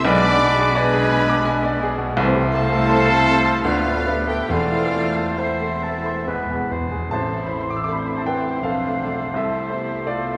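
A clear baby grand piano sits up front and carries the melody through this brooding, tragic classical fragment in A minor, cut from a longer piece. The music moves in a slow, rubato 3/4 at roughly 67 to 87 BPM over chords such as G#dim/B, Am/C, Bm7b5/D, E and Am. Con sordino chamber violins also carry the melody in a veiled, distant voice, and a second, very quiet violin section adds a soft-edged counterline beside a pure-toned flute, a roomy oboe and a mellow clarinet. Muted violas, a bassoon with gentle vibrato and muted cellos and double basses fill out the dark accompaniment and bass, while a shadowy French horn section holds chords in the background. A tight, bright trombone section adds sustained chords until about 6.6 seconds, and a punchy trumpet with light vibrato adds stabs until about 6.7 seconds. Timpani struck with hard mallets enter at 4.5 seconds, playing an articulate, close fill just before the music turns toward its next section at 7.1 seconds. 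A wet concert hall reverb gives the whole ensemble a spacious, mournful depth.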